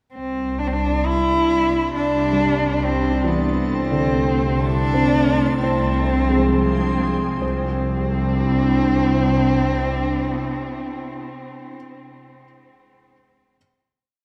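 Ambient piece, weightless and serene at 66 BPM in C major, where an expressive bowed cello with vibrato and portamento sings a free melody up front through tape echo over a rich bowed double bass section holding a low C, a calm organ-like pad that fades in with ensemble chorus on slowly shifting chords from Cadd9 through Fm6/C, a very quiet evolving analog drone, a glassy, ethereal glass harmonica holding a high note in the background until 7.4 s, and muted upright piano arpeggios in three drifting loops of unequal length that linger alone until 13.6 s, the whole mix steeped in a long plate reverb.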